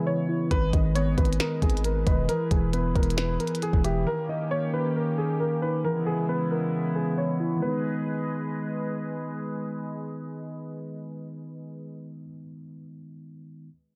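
Trap-leaning hip hop at 135 BPM in a half-time feel, melancholic and menacing in G# harmonic minor, this short cut opens on a brief break before a growling, buzzy 808-style bass and a minimal electronic click kit with soft kick, tiny snare and clicky hats enter at 0.5 seconds under a worn, dark baby grand piano melody, a clean tine electric piano filtered through built-in speakers and a smooth, warbling vintage analog pad with chorus, moving from C#m7 through G#m, E and D#7 during a long filter sweep in a dry, dusky mix.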